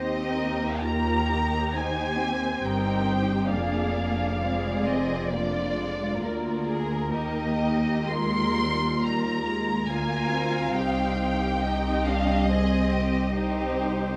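A rubato 4/4 pulse drifting between 56 and 72 BPM carries this serene, tender slow movement for string orchestra in Eb major, cut from a longer piece and moving from Eb through Bb7/F and back to Eb before settling on Cm near 10.8 seconds. A distant, lush first violin section sings the melody with vibrato, soft attacks and portamento, shadowed by a darker second violin line, while close, warm violas fill the accompaniment above a smooth, even cello section in the background and a clear, focused double bass. The scoring-stage reverb is moderate and the close microphones catch fine detail, and the violin melody drops away at 13.7 seconds as the remaining strings carry on to around 14.2 seconds.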